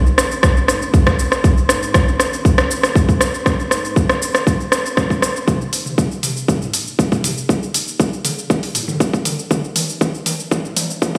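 A straight afro house groove builds with an earthy, spiritual mood over the whole fragment, as a punchy, overdriven electronic kick sits up front beside a gritty house kit of hi-hat, rim click, shaker and toms that breaks into a drum fill from 5.5 seconds, while a round, deep sine sub bass hums very quietly underneath, and a filter sweep runs throughout, with the drums sounding replayed through a big system in a bare stone room under a concert-hall reverb tail.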